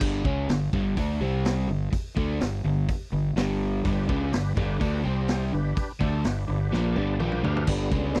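A dry, close recording with a 1970s studio feel frames this short cut from a longer blues rock and southern rock piece, gritty and swaggering at 125 BPM in a straight 4/4, centered on G mixolydian. A bright, double-tracked guitar plays a crunchy overdriven riff up front over G5, C5 and G chords. A growly, punchy fingered electric bass with fuzz and overdrive sits alongside it. The vintage acoustic kit has a tight kick, a medium-tuned snare, dark cymbals and a saturated, rolled-off top, with hi-hat, ride, crash and toms. At 3.8 s a thick, full tonewheel organ enters lower in the mix with sustained chords, its overdriven voice colored by key click, chorus vibrato and a slow rotary speaker. At 6.7 s the drums and organ each play a fill that runs for a second.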